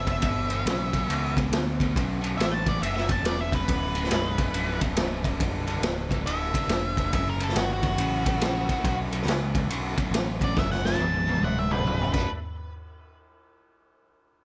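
A swung feel in 4/4 at 139 BPM drives this gritty, brooding slice of blues rock and southern rock in B minor, cut from a longer piece. A raw garage drum kit sits up front with a punchy kick, a medium-tuned snare, crash, ride and toms, its sound saturated and small-roomed with a rolled-off top, and it plays a fill from 10.6 seconds. Beneath it, a growling picked bass adds overdriven, direct-and-amped bite, while a bright, double-tracked overdriven guitar carries the low riff. Above them, an octave-fuzz lead guitar sings a dark, distorted melody through digital delay. From 2.0 seconds a very quiet overdriven tonewheel organ holds thick sustained chords with chorus vibrato and a slow rotary speaker, moving through Bm7, G7 and F#7#9 under light reverb.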